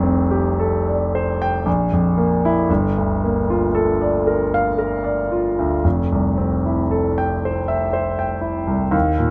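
A close, detailed recording with little reverb places a grand piano up front, its tone present and its notes carrying long sustain. This is a short passage cut from a longer piece of impressionist classical music for solo piano, serene and luminous in mood. The piano plays alone throughout the 9.3 seconds in a slow triple metre with a flexible, rubato feel, its range reaching from deep in the bass up to the treble. The harmony drifts through rich, extended chords, from an opening F6/9 through Bb5 and Gm9 before settling onto Fmaj9 at 5.8 seconds. The result is a glowing, unhurried moment of colour and resonance.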